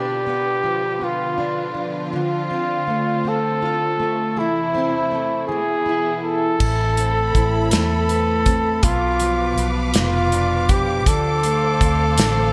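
A slow 6/8 lilt at 54 BPM, counted in dotted quarters, carries this melancholic, aching pop ballad in A minor, cut from a longer piece. A warm, lightly vibrato flugelhorn sings the melody up front with a smooth, punchy tone and a digital delay trailing its lines. A double-tracked, fingerpicked jumbo steel-string acoustic guitar gives a full-bodied accompaniment, while a bowed studio string section holds expressive sustained chords with vibrato and portamento. At 6.6 seconds a dark, round, foam-muted electric bass and an up-front country drum kit with a punchy kick enter, the kit's kick, snare, hi-hat and crash wrapped in gated reverb. The harmony moves through Bdim, Dm7 and Am/E to E, then opens onto Amadd9, all set in a plate reverb with a bright 1980s-style digital sheen.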